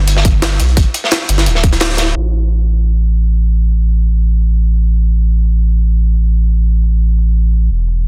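A deep, thick saturated sub bass sits up front through this soulful, melancholic liquid drum and bass excerpt at 173 BPM, joined by a tight, layered electronic kick until 1.7 seconds, a crunchy breakbeat kit with a rolled-off top until 2.1 seconds, and a gritty, pitched-up jungle sampler-style kit with a high-tuned snare and shaker that carries on through a filter sweep from 2.2 seconds in a dense, heavily limited master.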